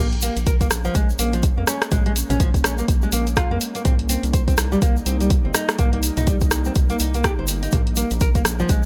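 This dry, close-sounding excerpt from a longer afro house track sits in the drop at 124 BPM in Bb dorian, with a swung 16th-note feel and a warm, driving mood. A deep house kit of hi-hat, rim click and toms, tape-colored with a small-room character, opens the groove, followed by a grainy, bright egg shaker. At 0.5 seconds a deep, layered electronic kick that shares that same room tone arrives up front to anchor the groove. A round, dark analog bass blends square, sine and triangle waves with wave-folding, its fast attack and sustained notes pumping against the sidechain. A woody, fingerpicked nylon-string guitar on old strings plays classical-style arpeggios through delay and the same pumping. From 0.8 seconds an ethereal, airy pad of detuned sawtooth and triangle voices in unison drifts in the background with a slow attack, long release, ensemble chorus and its own reverb, holding chords that move from Bbm7 to Cm7 at 3.9 seconds and back to Bbm7 at 7.7 seconds.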